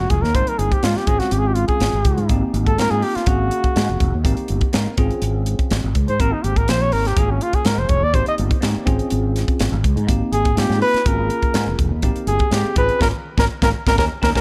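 Electric jazz fusion in Ab major at 123 BPM, this slick, soaring passage cut from a longer piece moves in a straight 4/4 over chords that circle back to Abmaj9 between Dbmaj7/Ab, Gbmaj7/Ab and Bbm7 colors. A trumpet with a bucket mute carries the melody as an up-front solo throughout, its veiled, breathy tone shaded with light vibrato and a smooth top. A bell-like tine electric piano supplies bright, clean accompaniment through a phaser, while a fretless electric bass sits up front with a growly, amped sound thickened by ensemble chorus. A crisp fusion drum kit, entering at 0.1 seconds, brings a high-tuned snare, punchy kick and hi-hat recorded with an airy, polished studio-room sound. Near the end, from 13.0 seconds, a drum fill and a band accent arrive, with a short electric piano fill at 14.0 seconds, all under light reverb and a dark production.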